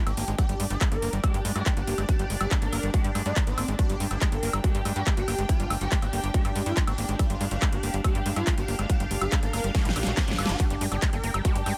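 Squelchy, gritty acid bass and a soft, bowed string section open this hypnotic psychedelic trance excerpt, joined at once by a tight, nasal sequencer bass, a swarming, detuned rave lead with tape echo, a wave-folded drone of moving overtones, a big-room kit with a huge snare and metallic hats, and a punchy, up-front electronic kick from 0.4 seconds, with the acid bass, strings, lead and drone pumping together, while a drum fill from 9.7 seconds brings a very quiet reverse cymbal.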